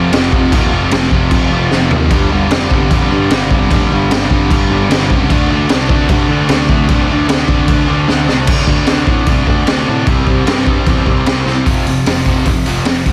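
Aggressive and angry, this punk rock excerpt charges along at 151 BPM in a straight 4/4, with a raw, boomy-kicked garage drum kit sitting up front, its high-tuned snare and gritty, saturated small-room sound driving quick fills, while a crunchy overdriven guitar and a bright, tight distorted guitar churn power-chord riffs behind it over a growly fuzz-picked electric bass line, joined by a very quiet double-tracked distorted guitar that drops out at 8.5 seconds and returns at 11.7 seconds, all in a dry, dense, heavily limited modern mix.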